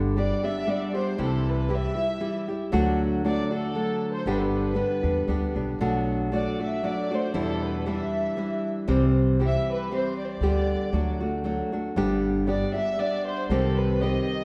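A lilting 3/4 swing at 117 BPM carries this proud, romantic mariachi excerpt in G major, where fingerpicked classical nylon-string guitar and woody pizzicato upright bass support a dark, reedy chamber violin section with gut-string tone and light vibrato that enters at 0.2 s, moving through G, C, D, Bm7 and Em7 before a closing Cm, all heard from further back in a scoring stage with a lush 1.8-second reverb.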